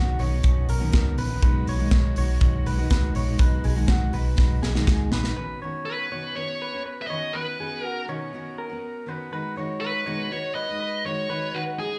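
Heard through a club PA with a touch of room reverb, this bright, breezy jangly indie pop excerpt pairs a full-bodied fingerpicked jumbo acoustic guitar with twangy, slightly broken-up electric arpeggios bathed in plate reverb, while a warbling string-machine viola pad, a round foam-muted bass and a punchy, polished drum kit drop away after a fill ending at 5.4 seconds, before a dark, overdriven lead guitar takes the melody up front from 5.9 seconds.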